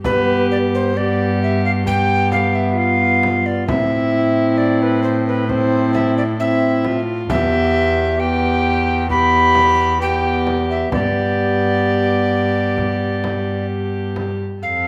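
An airy alto recorder carries the melody up front, its wooden, straight tone showing a crisp, chiffy attack and lifted highs in an expressive line. Beneath it, a single bowed viola with a gut-string, reedy sound and smooth top plays a second line, while a close-miked solo trombone with a soft attack supplies accompaniment. A rich, distant cello with light vibrato and a nasal edge holds the bass, and a deep, large frame drum sits in the background until 14.6 seconds. This courtly, solemn renaissance-style consort dance moves at 66 BPM in straight 4/4, tuned to A4 = 439 Hz, over chords of G, Am, Em and back to G. A wet recital hall reverb with a 1.5 second decay surrounds the ensemble in this passage cut from a longer piece.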